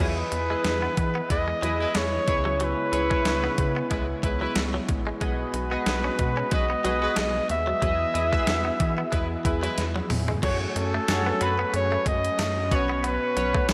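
A flugelhorn carries the melody up front, its punchy tone marked by vibrato, scooped notes and a slapback echo, in this dramatic, nostalgic stretch of 1980s-style pop at 92 BPM, with a light 16th-note swing in F# dorian. A clean 12-bit drum machine sits forward beside it: a thumpy kick and medium-tuned snare roughened by overdrive, with hi-hat, tambourine, toms and crash, and a drum fill at 9.8 seconds. A rubbery, hollow square-wave bass bounces beneath glossy, chorused retro synth keys and a smooth, detuned analog pad. In the background, a twangy, direct-recorded clean electric guitar plays a riff through lush chorus, slapback echo and digital delay. A horn section adds present ensemble stabs with light vibrato from 1.3 seconds. The harmony moves from Emaj7 through C#m7 and G#m7/B, then shifts to F#madd9 at 10.4 seconds and on to Bsus2, and the mix sits in a wet concert-hall reverb for a big arena sound.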